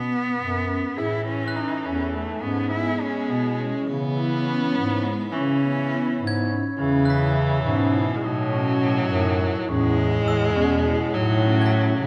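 Restless and pensive, this contemporary chamber piece moves in an uneven 5/8 with a straight feel, cut from a longer work. A clear, focused cello carries the melody with vibrato from the opening, while a vibraphone struck with soft mallets spins ringing, airy arpeggios shaded by a slow motor vibrato, and a mellow bass clarinet holds the bass with a smooth classical tone, sitting up front. A bowed viola joins at 1.0 s with an even, warm second line, and shortly after a glassy FM pad settles into the background with slow-attack, ethereal sustained chords, thickened by ensemble chorus and its own reverb. A bright glockenspiel played with brass mallets adds sparkling, bell-like touches high above, first briefly and then steadily from 6.3 s, just before the music passes into a new section. The harmony drifts through seventh and suspended colours, and a moderate scoring-stage reverb gives the small ensemble a sense of space.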